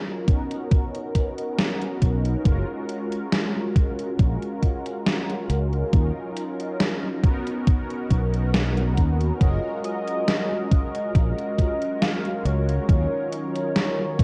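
A mellow, brassy synth opens this nostalgic, woozy vaporwave fragment in F# major at a slow 69 BPM with a slight swing, its round, detuned tone colored by phaser, analog chorus and delay, before a thumpy, overdriven electronic kick and a gated 80s digital drum machine with hi-hat and gated-reverb snare arrive up front, sounding re-recorded in a large room. A punchy fingered electric bass joins at 2.0 seconds under chords moving from Bmaj7 through F#maj9 and D#m7. At 9.4 seconds a velvety, smooth synth lead with vibrato, chorus and tape echo takes the melody over a very quiet, warbling lo-fi pad, all set in a dark, cassette-tinged production with light reverb.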